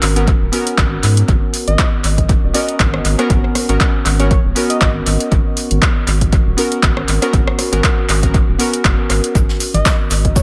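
Heard through an echo-heavy mix with light reverb and small room ambience, this deep, moody deep house excerpt moves at 119 BPM in G# minor, swung on the 16ths and resting on a single G#m11 chord. Detuned, chorused analog key stabs with dub echo pump alongside a round, dark analog bass, while a punchy, overdriven electronic kick and a layered drum kit of handclaps, hi-hat and rim click drive the groove, and a very quiet, warbling lo-fi pad enters at 0.5 seconds. A gentle, keys-like FM synth lead with vibrato plays from 1.7 to 4.9 seconds and returns at 9.7 seconds, and near the close a brushed snare and shaker arrive at 9.4 seconds, joined by a brief touch of saturated congas in the background.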